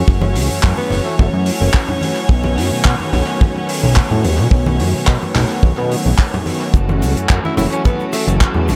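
Groovy and cosmic, this nu-disco cut moves at 108 BPM in F# dorian with a light swing, riding F#m7 and B7 chords over a fat, detuned sawtooth bass with a filter sweep and a tight, dry kick, both up front. A damped 70s drum kit adds handclaps, hi-hat and rim clicks, while very quiet congas and egg shaker ring with hard hands, and a smooth, warbling analog pad and a distant, focused chamber violin section both pump with sidechain compression. A growling, breathy tenor saxophone with scooped notes surfaces briefly at 0.8 seconds and again at 7.4 seconds, its phrases trailed by tape echo in an echo-heavy mix with small room ambience.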